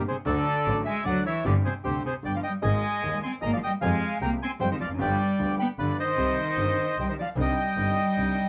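A reedy, vintage bandoneon carries the melody up front from the first moment of this passionate, dramatic tango fragment in 3/4, its phrasing loose and rubato. Beneath it a rich bowed cello plays a second line with expressive vibrato and portamento, a warm concert grand piano with deep bass supplies the accompaniment, and a close, biting bowed double bass with an airy, earthy edge and light vibrato holds the bass. The band plays live in one room with moderate studio reverb, the harmony moving through Absus2, Fmadd9 and G7 before arriving on Cmadd9 at 6.2 seconds.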